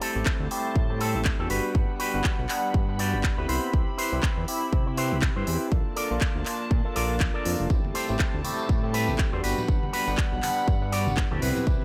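A house kit of handclaps and crisp hats opens this filtered disco house excerpt at 121 BPM in 4/4 with a 16th-note swing. A fat, detuned analog bass joins at 0.2 seconds and a punchy, up-front electronic kick at 0.3 seconds, while tambourine and congas arrive distantly in the background at 7.7 seconds. Over chords moving from Am7 through Gmaj7, Cmaj7 and Bbmaj7, a barky, overdriven tine electric piano with phaser plays accompaniment alongside a twangy, picked electric guitar riff through an envelope filter and 12-bit sampler grit, with a reedy, period-style string section holding sustained chords behind them. The nostalgic, funky mood is shaped by sidechain pumping and low-pass filtering across the piano, strings, guitar and bass, all set in light reverb.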